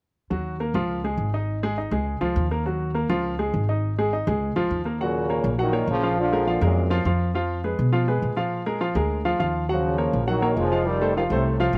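A bright trombone section leads this driving, fiery salsa clip, stepping forward at 5.0 seconds with a jazz-style ensemble sound, light vibrato and a slapback echo, then returning at 9.7 seconds. Underneath at 205 BPM in 4/4 with a straight feel, a brilliant upright piano with audible action noise and short sustain carries the accompaniment from the start, also touched by slapback echo. A woody, growly upright bass played pizzicato on steel strings anchors the low end with a thumpy, up-front presence. The opening section cycles through Eb minor and Db with Ab5 chords, before the second half moves to richer harmony built on Ebm9, Bb7, Fdim and F9. The sound is dry, recorded outdoors with little reverb and an absence of room sound, and the clip is cut from a longer piece.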